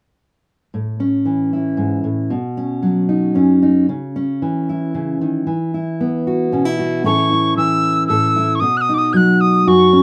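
A lilting 3/4 pulse at 114 BPM carries this short, nostalgic acoustic folk passage in A lydian, cut from a longer piece, where a full-bodied fingerpicked steel-string guitar sits up front from 0.7 seconds, cycling through A, Badd9, C#m and Esus2. At 7.1 seconds a metal mid whistle enters high above it, airy and expressive, with audible chiff on its tongued notes, gentle vibrato and rolled-off highs. A wet studio ambience with a short reverb tail gives the pastoral scene a soft glow.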